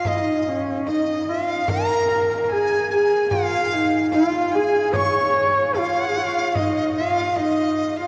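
A straight 4/4 pulse at 74 BPM carries this vast, windswept fragment of Mongolian folk music, where a dark, husky horsehead fiddle leads up front with light vibrato, portamento and an airy bow, a breathy, unsteady bamboo dizi with a buzzing membrane and warm vibrato traces a higher second line, and a small, bright frame drum sits quietly underneath, all bathed in a long cathedral reverb.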